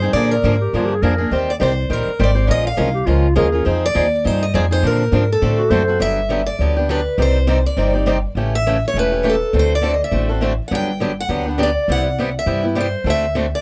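A brisk 204 BPM swing in 4/4 drives this playful, dry and close-sounding acoustic string-swing fragment, where a boxy, bright picked steel-string guitar carries the tape-echoed melody over a picked swing-style rhythm guitar and a woody, thumpy gut-string upright bass, while a mellow clarinet with vibrato adds a smooth second line from 0.6 to 6.0 s before the music settles into G major at 6.0 s over chords such as Gmaj7, A7 and D9.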